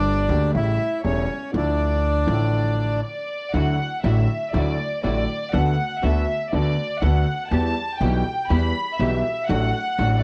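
A homely cassette recording with light reverb and the small-room feel of a home taping frames this dramatic, sultry tango fragment, cut from a longer piece and played with a loose, rubato feel. Up front, a reedy, dark bandoneon carries the melody while a soft-attack, sul tasto violin section floats above it with a pure second line. Underneath, a polished grand piano with short sustain fills out the accompaniment, and a woody, thumpy pizzicato upright bass on steel strings sits bright and forward. The bandoneon drops out at 3.0 seconds, and after a brief stop the harmony brightens from minor to major at 3.5 seconds as the violin section takes over with a solo. At that point a lush, distant studio string section with smooth vibrato joins in the background with stabs, behind the piano and bass, which carry on to the close.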